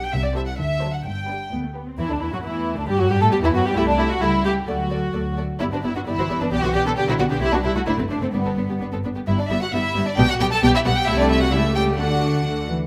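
In a quick 2/4 at 132 BPM with a rubato feel, this cheerful, lively classical-period movement for string orchestra in G major moves briskly through a short passage cut from a longer piece. A violin section carries the melody from D4 to A5 while a second violin section, sitting up front, plays a second line beneath it. Both are bowed sul tasto with a soft attack and a pure, floating tone. A viola section supplies intimate accompaniment with light vibrato. A dark cello section with a smooth top and a double bass section, both also sul tasto, share the bass, with the cellos sounding until 12.9 seconds. Close, detailed microphones catch each section inside a moderate scoring-stage reverb, as the harmony cycles through cadences such as Am7/C, D7 and G, arriving on D at 12.0 seconds.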